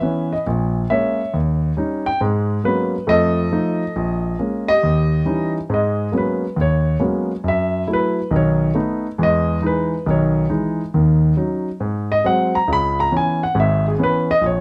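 A swung 4/4 pulse at 137 BPM, with eighth notes swung at 67%, carries this cool, moody solo jazz piece in G# minor, cut from a longer performance. A lone grand piano plays throughout, ranging from G#1 up to B5, with an intimate, up-front presence and the natural sound of its action clearly audible under the notes. The opening passage moves from A#m7b5 and D#7 to G#m11, then F7, A#madd11 and D#7b9. At 5.7 seconds the music shifts into a new section where the piano takes a solo over G#m11, F#m7, B7 and Emaj7. The solo then continues through D#m7 and G#7 to C#m7 before the fragment ends at 14.6 seconds. Close, detailed miking places the listener near the instrument, set in a moderate club ambience with a short, natural room tail.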